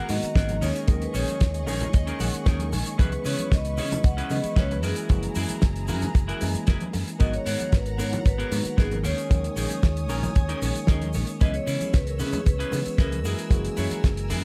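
A dark, warm studio sound frames this sleek, cosmic nu-disco excerpt at 114 BPM in a straight 4/4, moving through G#m9, D#7sus4, C#m7 and F#9. A metallic, ringing vibraphone with tape echo carries the melody over a worn, slightly out-of-tune tine electric piano and a picked, clean electric guitar riff that adds fills at 1.4 and 9.8 seconds. Lush, bowed strings with vibrato pump behind a bright, amped fingered bass with an envelope filter, while a dry, up-front kick, a damped 70s kit with a fat snare, and very quiet egg shaker, bongos and congas played with soft hands drive the groove.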